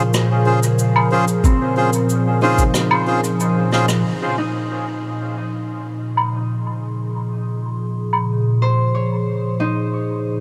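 A huge, moderate ambient reverb with a 7.1-second tail surrounds this meditative, spacious ambient dub fragment at 92 BPM in Bb minor, resting on a Bbm7 chord in a straight 4/4. An up-front, warbling tape-like pad holds sustained chords throughout, its detuned square, triangle and sawtooth tones made mellow and nostalgic by chorus, phaser and built-in reverb, while a fingerpicked Celtic harp rings out low-passed arpeggios with dub echo alongside it. A reedy, breathy melodica, close-miked and dry, punches in stabs through dub echo until 3.9 s. Distant cabasa, rim click and woodblock played with brushes sit in a roomy studio space with a rolled-off top, and a muffled, thumpy, overdriven electronic kick, pitched down and compressed, joins at 1.4 s before dropping out ahead of a short drum fill and a band accent. From 4.1 s a filter sweep moves across both the pad and the harp.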